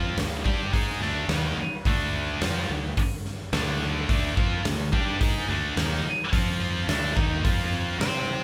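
A bright, double-tracked high-gain guitar sits up front, its picked, distorted riff driving this aggressive, heavy hard rock passage in D minor at 107 BPM, cut from a longer piece. Beneath it, a fuzz-laden fingered electric bass adds a growly, overdriven low end, heard straight through the full 8.4 seconds alongside the guitar. An acoustic arena drum kit enters at 0.2 seconds with a punchy kick, a medium-tuned snare and hi-hat, placed up front with a hall character. The harmony rests on D minor before shifting to power chords on F and D near the close. Light reverb frames the group, which sounds like a band playing live together in one room.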